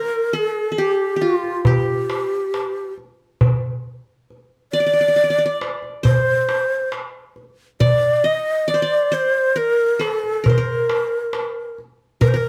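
Arabic maqam ensemble music in G bayati, melancholic and soulful, moving in a straight 10/8 at 136 eighth-note beats per minute in this short fragment cut from a longer piece. An up-front, end-blown cane ney carries the melody with a breathy, bright tone, tongued notes, vibrato and a somewhat unsteady delivery, while a plucked qanun with triple strings sits lower in the mix as a bright-edged second line in the same register. A crisp metal-shell darbuka struck with hard hands joins at 1.4 s, and the close, detailed recording carries a light reverb.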